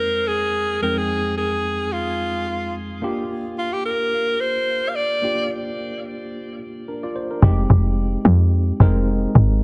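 Soulful and deep, this short amapiano excerpt opens with an edgy, forceful alto saxophone carrying a vibrato-laden pop-style solo melody drenched in tape echo over a worn, slightly out-of-tune tine electric piano heard as if through built-in speakers. The saxophone falls away at 5.5 seconds, and the drop at 7.4 seconds brings in a tight, punchy log drum bass with a fast attack and a noisy FM layer, all set in an echo-heavy mix with light studio reverb.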